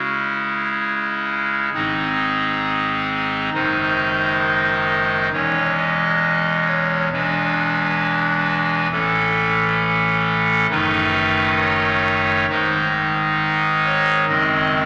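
A pipe organ voiced on a hollow clarinet reed stop, with baroque voicing and a touch of chiff, sits up front as the lone voice in this solemn, grave, chorale-style classical passage at 67 BPM in a straight 4/4, moving through C#m, G#, E7, A and D#dim/F# harmonies across a range from E1 to D#5, all wrapped in a wet church reverb with a 2.9-second decay across this short 14.9-second fragment of a longer piece.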